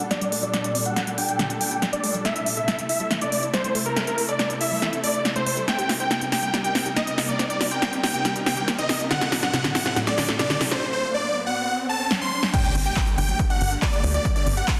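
Huge, detuned supersaw chords carry the melody through this soaring, emotional uplifting trance passage at 140 BPM in G harmonic minor, sidechain pumping under a low-pass filter that sweeps through the build-up and trailed by dub echo. Beneath them, a lush unison pluck spins arpeggios in the background, also pumping and echoing as its own filter sweeps, while a big-room dance drum kit with crisp hats, handclaps, crash and a punchy, overdriven snare rolls through fills up front. The harmony moves from Gmadd9 through Am, Cm7 and D, and an electronic riser climbs from 8.7 seconds toward the drop. At 12.5 seconds the music lands back on Gmadd9 with an impact and a punchy overdriven kick, and moments later, at 12.8 seconds, a tight, driving sawtooth sequencer bass joins, pumping in the low register. A dark, boxy grand piano adds a very quiet second line at the drop. The mix sits in a lush hall reverb with a dense, heavily limited modern master, and the passage is cut from a longer piece.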